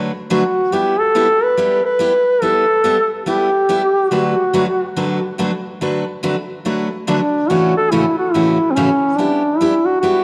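Country music with a down-home, cheerful mood, moving at 142 BPM in 4/4 with a swung eighth-note feel in D major. A picked steel-string acoustic guitar carries the accompaniment from the start, its bright, full-bodied dreadnought tone sitting up front with audible finger squeak. At 0.3 seconds a mellow duduk takes the melody as a solo voice, placed up front and played in a folk style with vibrato and scooped notes, its line colored by tape echo. The harmony moves through D6, G6 and A6 chords, and the whole short passage forms a single section running to 10.2 seconds. A wet echo chamber reverb with a long tail surrounds the sound, and the clip is cut from a longer piece.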